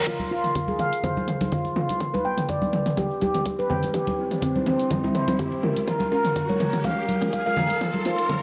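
Warm and earthy, this afro house build-up at 124 BPM in F minor is cut from a longer piece, with a ringing, meditative handpan up front playing mellow arpeggios under a dub echo, sidechain pumping and a filter sweep as a reverse cymbal and riser climb across the whole 8.4 seconds. A tape-tinged deep house kit of hi-hat and toms plays a fill over a very quiet, deep electronic kick, alongside saturated, hard-handed congas and a grainy, bright tube shaker, with a swung 16th-note feel. Underneath, a dark, detuned chord stab with chorus, phaser and a moving notch softly traces Fm7, G, C and Bbm7, all set in a lush hall reverb.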